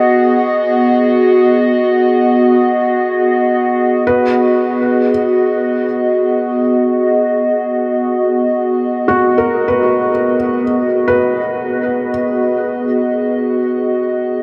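In free time and G# minor, this reflective, serene ambient excerpt opens on a warbling, detuned tape-like pad holding a G#m7 chord with chorus, phaser and built-in reverb, joined at 4.1 seconds by an intimate felt-muted upright piano whose soft arpeggios, with audible action noise, drift through a diffuse ambient delay, all set in a dreamy mix soaked in a huge reverb with a 9.1-second tail.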